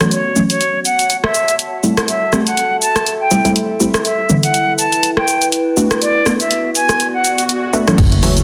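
A deep house groove at 122 BPM in 4/4, with a 56% swing on the sixteenths, drives this brief cut from a longer piece. The punchy analog drum machine sits up front with crash cymbal, hi-hat, rim click and shaker, its snare softly clipped, while a filtered dub chord stab, muted and detuned with subtle chorus and delay, carries a filter sweep from the start through 8.0 seconds over F#m7, Am7, Em7 and Bm7. Beneath them, a warbly, lo-fi tape-like pad adds nostalgic, mellow texture with chorus, its own reverb and sidechain pumping. An airy, close-miked concert flute sings an expressive, vibrato-laden melody from 0.1 to 7.4 seconds, with delay trailing it. A swell and sub drop rises from 7.2 seconds into an impact at 8.0, where a tape-warm electronic kick and a round, sidechained analog bass on F#1 land together. The mood is warm and deep, set in a moderate echo-chamber reverb under a dense, heavily limited modern master.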